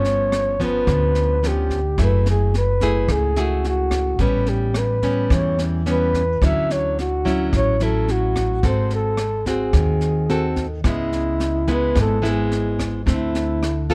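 Relaxed and sophisticated, this bossa nova passage moves in a straight 4/4 feel and is cut from a longer piece. A breathy flugelhorn carries the melody up front, its whispered tone and smooth top shaped by vibrato, soft attacks and scooped notes in an intimate jazz style. Fingerpicked nylon-string guitar supplies full-bodied accompaniment with fresh strings and a deep classical character, while the pizzicato upright bass sounds woody and thumpy. A jazz kit played with brushes sits lower in the mix, recorded in a small room, with a punchy kick, rim click and high-tuned snare. The harmony drifts through rich chords such as G7#11, F#m9, Dmaj9 and G#7b9, and light reverb frames a dark, warm production.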